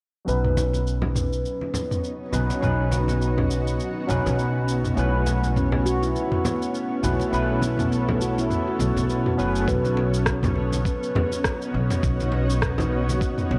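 Organic downtempo at 102 BPM in B mixolydian, peaceful and swung, cut from a longer piece: a barky, overdriven tine electric piano with chorus, tape echo and a filter sweep opens alongside a woody, growly upright bass up front and a tape-warmed electronic kit of rim click, shaker and toms, with a bright, blurred granular cloud pad joining at 1.4 seconds. Ringing congas and a metallic bronze singing bowl with slow beating sit in the background, while a mellow, meditative handpan plays arpeggios with gritty 12-bit sampler texture and tape echo from 5.0 to 9.5 seconds over the shift from Badd9 to Aadd9/B. At 9.7 seconds the electric piano drops out and a thumpy, compressed electronic kick joins, all bathed in a lush hall reverb and the warbling pitch drift of worn cassette tape.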